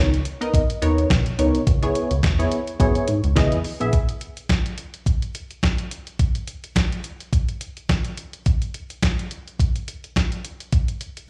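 A punchy, detuned sawtooth polysynth sits up front, comping funky chords with a filter pluck, chorus and slapback echo, moving from Bmaj9 to C#m7 in this slick, late-night early-eighties boogie funk cut from a longer piece. Beneath it, a glossy chorused synth bass blends pulse-wave and sawtooth tones with pulse-width modulation, giving a dark, evolving low end in C# dorian at 106 BPM with a swung sixteenth feel. A clean 12-bit drum machine drives the groove with a thumpy kick, fat snare and hi-hat, its sampler-style sound placed prominently in the mix. At 3.9 seconds the polysynth and bass both stop, leaving the drums to carry on alone until 11.3 seconds. The whole performance comes across like a live gig heard through a venue's PA, wrapped in digital club reverb.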